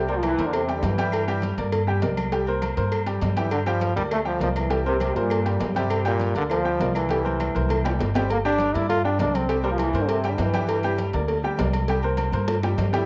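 A bright baby grand piano with audible action noise and a woody, up-front pizzicato upright bass open this festive, danceable salsa excerpt at 201 BPM. A clear trombone section arrives at 0.1 seconds with ringing agogo bells and timbales and soft-handed congas, joined moments later by low-tuned cowbell and bongos and distant claves. From 3.4 seconds a punchy, close-miked solo trombone carries the vibrato-laden melody over C7 and Gm chords, with drum fills closing each pass and cassette-tape grit on the horns and piano inside a wet spring reverb and homespun small-room sound.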